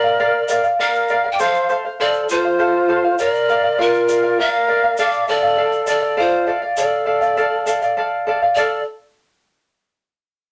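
Melancholic and wistful, this Andean folk excerpt in 3/4 sets a breathy, close-miked bamboo pan flute melody with vibrato and crisp chiff over a reedy, end-blown large quena second line and the up-front, shimmering double strings of a fingerpicked charango, while a grainy, band-limited tube shaker joins at 0.5 s and moderate studio reverb gives the ensemble a modest sense of space.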